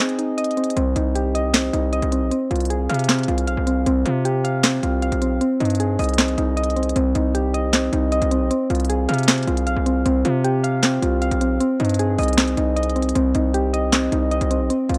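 Soft, round electric-piano-like synth keys play warbling arpeggios with chorus and tape echo over crisp hi-hats, handclaps and a sharp snare from a trap drum kit, before a heavy, saturated 808-style bass enters at 0.8 seconds in this melancholic, dark half-time trap excerpt at 155 BPM in C harmonic minor, cycling through Cm, Fm/C, G7sus4/C and Ab in a light reverb.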